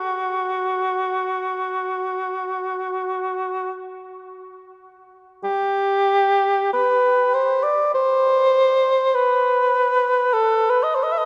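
Classical, lonely and mournful, this brief 11.3-second excerpt from a longer piece features an unaccompanied cor anglais moving freely in rubato at roughly 30-51 BPM, its mellow tone, light vibrato and soft attack sitting close and up front between F#4 and E5, tuned to A4 = 444 Hz and bathed in a wet cathedral reverb with a 6.1-second decay that gives the production a dark, warm sound.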